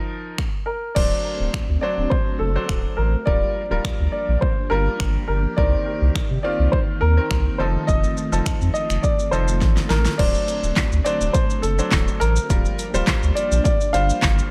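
Dance-pop in G minor at 104 BPM, this bittersweet yet energetic excerpt opens on a bright grand piano with audible action noise, joined within the first second by a punchy deep house drum kit of fat snare, handclaps, finger snaps, shaker and hi-hat, and a warm baby grand carrying the melody through delay. From 1.0 seconds a saturated, thick sub bass and a swirling vintage string machine, phased and chorused, pump with the sidechain under chords moving from D7 through Gm7/D, Cm7 and F7. A drum fill at 9.6 seconds leads back to D7, and the dry mix keeps the kit and bass up front.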